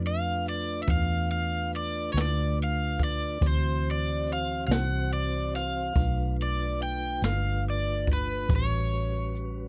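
A mellow, flute-like tonewheel organ holds sustained chords through a slow rotary speaker alongside a round, foam-muted electric bass from the start, and the overdriven semi-hollow guitar enters at 0.1 seconds with a bright, picked melody up front, while a jazz brush kit with a boomy kick joins at 0.5 seconds to carry this swaggering, soulful slow blues in 12/8 at 47 BPM through G13, D9, G9 and A13 chords, with a dark, dry production.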